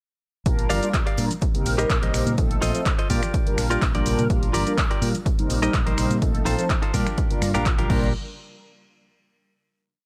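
A four-on-the-floor electronic kick drives this sunny, joyful filtered disco house piece at 125 BPM in 4/4 with a straight feel, its dry, punchy thump sitting up front from 0.5 seconds, while a punchy analog drum machine programs closed and open hats, finger snaps, handclaps, shaker and crash cymbal into a backbeat that pumps with the sidechain. A very quiet layer of tambourine and congas adds hard-handed disco percussion in a small room. Underneath, a dark, round fingered electric bass plays a funky syncopated line that also pumps, and mellow synth brass, sawtooth-based, detuned and touched by ring modulation, chorus and phaser, lays down dotted-rhythm chords with a filter sweep, cycling through Bb6, Eb6/Bb, F7/Bb and Gm7/Bb, each over Bb. From 0.7 seconds a bright, twangy clean electric guitar, recorded direct and compressed, picks a funk chord rhythm in close voicing with a gritty 12-bit sampler edge. 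The whole groove stays in a single drop until 8.1 seconds, when a final hit rings out into digital ambience to close the piece.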